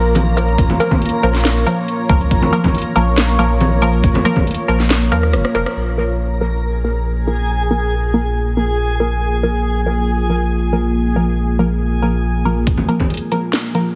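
A half-time 4/4 groove at 139 BPM drives this dark, heavy deep dubstep excerpt in Bb minor. The sustained layers begin at once, and the percussion follows within the first second: ringing, high-tuned congas carried on dub echo, then a garage kit of cracking snare, metallic hats, rim click and shaker, and then an overdriven, muffled, pitched-down electronic kick. At 4.9 seconds the kick drops out, a drum fill leads into a band accent, and from 5.8 seconds the percussion thins away while filter sweeps move across both the chord stab and the pad. Underneath, a thick, saturated triangle sub bass sits up front. Above it, muted, detuned sawtooth stabs pass through phaser and dub echo, and a moody, chorused pad holds slow-attack sustained chords. A reversed, granular texture adds a dreamy, bright shimmer. At 12.7 seconds the drums and congas return briefly for a build-up, all framed by light digital ambience and a heavily compressed, radio-like sound.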